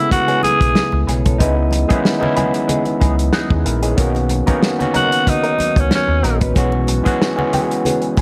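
Lush 1970s-style soul with a romantic, smooth mood, this short excerpt sets a breathy, raspy tenor saxophone up front for brief melodic phrases at the start and again from 5.0 to 6.4 seconds, over a barky, overdriven tine electric piano played through a combo amp. A dry, muffled, lo-fi drum kit with a tight kick and a round, dark fingered electric bass, which enters at 0.4 seconds, anchor the groove, while bright congas sit in the background. A clean, compressed electric guitar with wah and spring reverb plays a riff in the background, and a very quiet, metallic vibraphone with slow motor vibrato adds ringing texture as the chords move through Amaj9, C#m9, Bmaj9 and E69/B.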